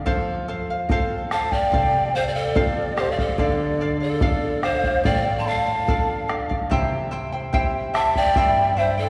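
A cavernous church reverb gives this short, earthy and melancholic Andean folk passage a distant, hall-like glow. A shimmering, bright charango with double strings and a small, fingerpicked nylon-string guitar move through F, Dm and C, while a deep, dark bombo sits up front. At 1.3 s a hollow, mellow large quena enters with the breathy melody and vibrato, joined by a close-miked pan flute carrying a second line with tongued chiff and an unsteady quality.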